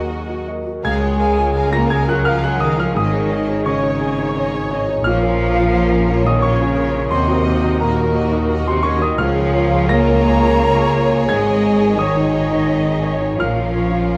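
A rich, up-front double bass section anchors this sorrowful, bittersweet cinematic film cue for orchestra, moving at a rubato 86 BPM in 3/4 while a smooth, vintage-toned grand piano and a warm cello section fill out the low and middle registers over a cycle of Ebm, Db6, Absus4 and Bbm. Lush, bowed violin sections carry the melody and a second line from the background, joined by a focused viola section and a very quiet, ringing harp playing arpeggios, before a pure, bright flute group and a mellow French horn section enter at 0.8 seconds with a second line and sustained chords. The whole ensemble sits in a moderate scoring-stage reverb, and the passage is cut from a longer piece.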